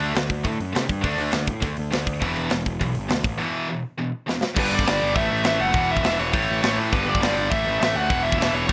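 Punk rock at 204 BPM in E minor, angry and urgent, this excerpt drives two tight, distorted rhythm guitars in the background and a growly, fuzz-laden picked bass through power chords on D5, E5, G5 and A5, while an up-front acoustic drum kit with bright cymbals, a medium-tuned snare and a tight kick pushes a straight 4/4. After a break from 3.4 seconds and a drum fill at 4.3, a dark, overdriven lead guitar enters at 4.6 seconds with a melody high above the riff. The sound is dry, with little reverb.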